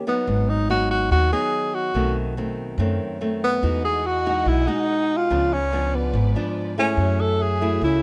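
Wistful and intimate, this bossa nova excerpt in C# minor at 143 BPM sets a breathy, subtoned tenor saxophone with scooped notes and vibrato over fingerpicked nylon-string guitar and a growly, woody pizzicato upright bass, while a dark, lush bowed string section enters at 3.6 seconds in the background beneath chords moving from G#m7 to F#m9, all in light reverb.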